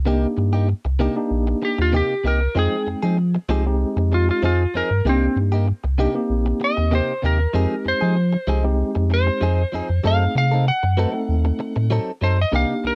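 Brooding and soulful, this minor-key blues at 96 BPM carries a light swing, with a deep, smooth sine sub bass up front and a tine electric piano heard through its built-in speakers comping over chords moving from Cm7 to Fm7 and on to F#dim7. A bright, compressed, direct-recorded electric guitar adds picked stabs with subtle chorus, while a warm, fingered lap steel takes the slide melody up front from 1.6 seconds. The sound is a dry, close 1970s-style studio recording with light reverb, cut from a longer piece.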